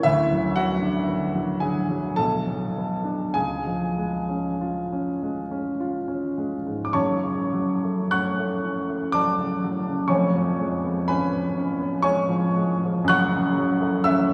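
A warm, up-front baby grand piano plays alone from the start, unfolding a wistful, mournful romantic nocturne in F# minor, in 3/4 at a slow, rubato 48-64 BPM and tuned to A4 = 443 Hz. Its harmony moves from Bm/D through C# before settling on F#m at 6.9 seconds, then leans on C#7/E# and returns home to F#m at 13.1 seconds, spanning E#1 to F#6. A cathedral reverb with a 5.8-second tail wraps the instrument in a lingering church-like halo, and this short fragment is cut from a longer piece.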